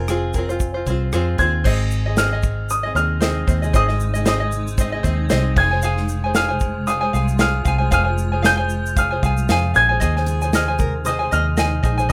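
A dark, woody upright piano carries the melody in this sunny, easy-going acoustic pop clip at 115 BPM in Ab major, over bright, fingerpicked tenor ukulele, a round, foam-muted electric bass sitting up front and a brief picked steel-string guitar arpeggio in the background, with a studio drum kit of punchy kick, rim click, shaker, snare and crash entering at 0.1 seconds. From 3.1 seconds a cloudy, blurred granular pad with a slow attack and its own reverb drifts in beneath with sustained chords, as the harmony alternates between Fm and Ab, and the guitar returns briefly at 10.3 seconds. A light reverb and a gentle sixteenth-note swing keep the feel relaxed.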